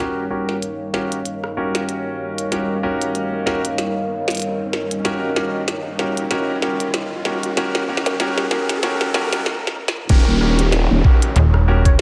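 Glitch hop at 95 BPM with a swaggering, gritty swing, this excerpt builds over an Eb7#9 chord as a dark, detuned analog pad and bright, intimate grand piano stabs pump under sidechain, the piano filtered and delayed, while a riser, a warbling lo-fi tape-like pad and a glitchy kit of tiny snare and clicky hats in a large room push toward a stop at 9.5 seconds. The drop lands at 10.1 seconds with a compressed, thumpy kick and a growling, wobbling bass on Eb1, then a snappy, metallic FM bass takes over and a woody wave-folded pluck touches Db5 at the very end. A lush hall reverb surrounds the mix.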